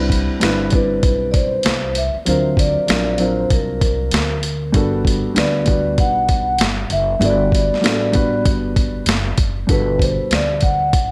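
Warm and smooth, this jazz-hop passage cut from a longer hip hop piece moves at 97 BPM in G major with a swung 16th feel: a gritty, compressed boom bap kit with a thumpy kick and high-tuned snare sits up front, a woody pizzicato upright bass and a dark, vintage grand piano with short sustain carry the Cmaj7, D7alt and Gmaj7 changes, and from 0.8 s a mellow, ringing soft-mallet vibraphone with slow motor vibrato and analog delay carries the melody before the harmony settles on Gmaj9 at 9.7 s, set in light reverb and small room ambience.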